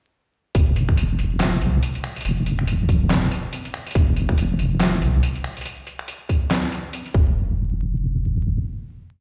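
Meditative and dark, this short deep dubstep piece rides a half-time, swung drop from 0.5 seconds, where a tight, layered electronic kick and a gritty, pitched-down, compressed sampler-style kit of finger snaps, handclaps, closed hi-hat and snare sit up front beneath long, wobbling notes from a deep detuned sawtooth-and-sine bass with chorus, which carries on alone into the final hit at 7.4 seconds until 8.6 seconds, all heard as if played on a big sound system in a bare room with large studio reverb and vinyl crackle.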